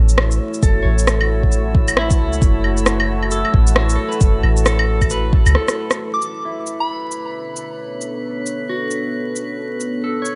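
Ghostly and nocturnal, this future garage excerpt drifts over a detuned sawtooth pad and a clean, picked electric guitar with dub echo, both pumping to the sidechain, while glassy harmonics shimmer and tape-warm shaker, rim click, claves and cabasa sit up front alongside the round 808-style bass, with the deep kick beneath, until the bass falls away and a short drum fill lands at 5.6 s, filter sweeps move across the pad and guitar from 6.0 s, a soft FM bell with phaser plays a brief melody at 6.1 s, and faint vinyl crackle lingers throughout.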